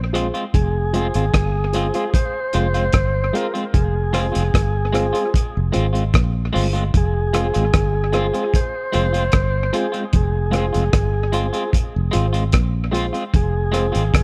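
A round, foam-muted fingered bass opens this hypnotic, laid-back roots reggae excerpt at 75 BPM in F minor, joined at once by a muffled, gritty cloth-damped drum kit of tight kick, hi-hat and rim click sitting up front with the bass, a dark, slightly broken-up electric guitar with harmonic tremolo and tape echo, and reedy electric piano stabs with fast tremolo in the background, while from 0.5 s a lightly overdriven tonewheel organ with key click and a stopped rotary speaker carries the melody over a single Fm chord in an echo-heavy mix.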